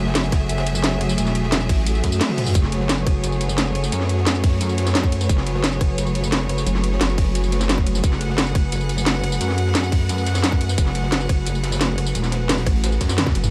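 A tight, up-front mix with light reverb carries this aggressive, futuristic excerpt of dark technical drum and bass at 175 BPM in F# minor, cut from a longer piece and sitting entirely in a drop over an F#madd9 chord. A metallic, saturated FM wobble bass with chorus and overdrive pumps beneath lush bowed strings holding sustained chords and a cloudy, blurred granular pad in the background, while a tight layered electronic kick, a drum and bass kit with a cracking snare, metallic hats, rim click, tambourine and toms, and a very quiet gritty breakbeat kit with dark cymbals drive the groove. A nasal, resonant vowel-sweep wobble bass cuts in briefly around 1.7, 6.7 and 12.7 seconds, a faint reverse cymbal marks a drum fill at 2.3 seconds, and another fill closes the passage at 13.2 seconds.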